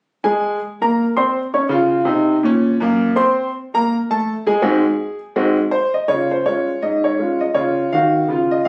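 Lively and playful, this brief ragtime fragment in 2/4 swings its sixteenths on a solo grand piano that sounds warm, boxy and up front, shifting into a new section at 6.1 s, captured on a phone in the room with moderate studio reverb and compression.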